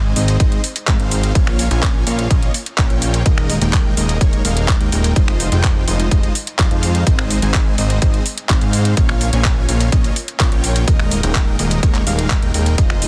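Dense, heavily limited and steeped in digital ambience, this euphoric, anthemic festival progressive house excerpt in straight 4/4 pairs a huge, detuned supersaw riff, airy with a noise layer and vibrato and trailed by digital delay, with a fat sawtooth analog bass carrying a filter sweep, both pumping from sidechain compression, while a layered pop kit of finger snaps, handclaps, metallic hats and a softly clipped snare enters at 0.2 s and a punchy, up-front electronic kick lands at 0.4 s over chords moving through Ab, Bbm, Ebsus4 and Fm7.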